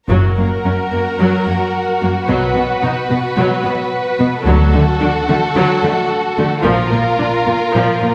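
A full string orchestra enters together at 0.1 s in this heroic, triumphant cinematic passage, cut from a longer piece and moving at 110 BPM in a straight 4/4. The violins carry the melody in a narrow span from A4 to B4, their bowed tone focused and lush with vibrato, while a second violin line sits just beneath with a soft attack and expressive, up-front presence. Violas fill the middle with an intense, rich accompaniment, and the cellos anchor the bass with a smooth, even sound placed near the front. Double basses add a woody depth beneath them before dropping out at 6.9 s, leaving the cellos to finish the bass line to 8.1 s. The harmony moves from F# through B5 and D to A#5, all bathed in a generous scoring-stage reverb that sets the ensemble further back in the room.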